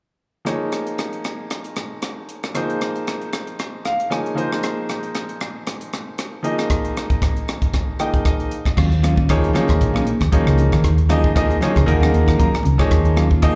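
Slick and nocturnal, this electric jazz fusion excerpt moves at 116 BPM in Eb dorian with a light sixteenth-note swing, opening on a bright, brilliant grand piano with slapback echo and a crisp, up-front drum kit whose punchy kick, hi-hat, rim click and crash carry it through piano fills around 3.6 and 7.7 seconds. At 8.8 seconds the second section arrives on an Ebm11 chord as a growly, round fretless bass with analog chorus enters alongside clean, dark guitar stabs drenched in lush chorus in the background, while very quiet, high-tuned congas with a ringing, vintage tone join just after. It sounds like a live club gig heard through the venue's PA, dulled at the top end and set in a small, reverberant room.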